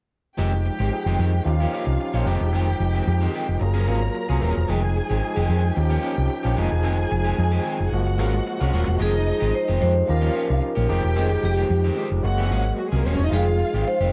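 A driving, sultry disco groove at 111 BPM in F minor opens at 0.4 s with a round, dark hollow-body electric bass up front, a lush bowed violin section, a barky, gritty tine electric piano with fast tremolo and a twangy, slightly broken-up picked guitar through spring reverb, all circling Fm9, Eb9 and Gbmaj9 in a dry, close 1970s-style small room, until a bright, ringing hard-mallet vibraphone takes the melody from 9.0 s to 14.1 s in this cut from a longer piece.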